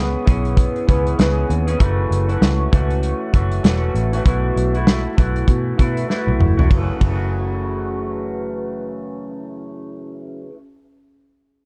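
A dark, warm mix with small-room ambience frames this wistful, lonely piece of indie bedroom pop, cut from a longer track, with a light sixteenth-note swing. Up front, a twangy, slightly broken-up electric guitar played through a small old amp carries the accompaniment, its lo-fi, compressed tone bathed in lush chorus and vibrato. Beneath it, a foam-muted, picked electric bass sounds round and amped. A loose acoustic drum kit, also up front, comes in at 0.3 seconds with a tight kick, a medium-tuned snare, hi-hat, ride, toms and dark cymbals, all roughened by vintage 12-bit sampler grit. The harmony moves through C#m7, F#m7 and B7sus4, and a drum fill at 6.1 seconds leads into a new section back on F#m7, where the drums stop at 7.2 seconds and the guitar and bass carry on alone.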